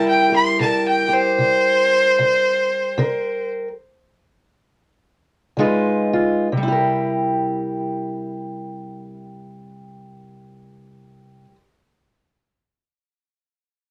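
A bowed fiddle and a fingerpicked steel-string acoustic guitar open this soulful, laid-back slice of acoustic country blues in C mixolydian, swinging in 4/4 at 62-79 BPM and easing its tempo through the opening passage. The fiddle carries the melody up front, one player with a clear, intense tone, light vibrato and a faintly distant quality, soloing within a range of C5 to C6 until 3.5 seconds. A stop breaks the flow from 3.0 to 5.6 seconds as the harmony moves from C7 to C5 and then to a colourful Db9. The parlour guitar, also up front, supplies the accompaniment with a dark, woody, boxy sound from old strings, ranging from C3 to Cb5 and continuing on its own to 11.6 seconds after the harmony returns to C7 for a new section. A short, wet booth ambience surrounds the players, and worn cassette tape adds a warbling pitch drift that gives the whole cut an aged, homespun character.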